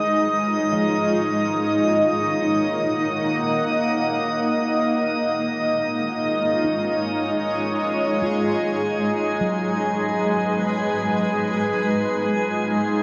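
A cloudy granular pad and a glassy, drifting texture of harmonics sit up front from the start, both bathed in chorus and shimmer reverb, while a very quiet, mellow handpan rings out soft arpeggios beneath them until 11.5 seconds. This serene, spacious ambient passage floats in free time through gentle chords such as C#add9, D#m and G#m7. The dreamy mix is soaked in a huge reverb with a cassette-tape character, and the passage is cut from a longer piece.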